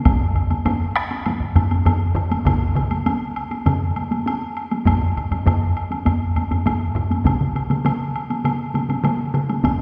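Driving and powerful, this straight 4/4 Japanese traditional taiko drum ensemble piece moves at 100 BPM, with three taiko ensembles struck with heavy sticks: one vintage and band-limited, one close, dry and up front, and one carrying a live room sound, while a woody woodblock sits lower in its own small room. At 2.5 seconds a compressed, saturated solo taiko drum part joins, playing until 9.5 seconds. The whole is heard from further back in a scoring stage with a wet 1.9-second reverb, cut from a longer piece.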